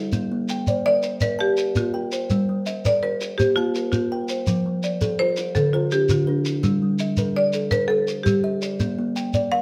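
Two interlocking kalimbas open this rippling southern African traditional piece in an mbira-style cycle, one woody and short with a thumbnail pluck off a solid board, the other a mellow, ringing fingertip pluck from a hollow box, while a grainy shekere sits close and dry up front. At 0.9 s a bright, percussive marimba struck with hard mallets on padauk bars carries the melody through a touch of plate reverb, riding a straight 12/8 pulse at 111 BPM in G equiheptatonic tuning over chords moving from Bb through Gm, F and Dm. This brief, warm cut from a longer piece shifts into a second section at 6.6 s on Gm before returning to Bb, all set in a moderate studio room.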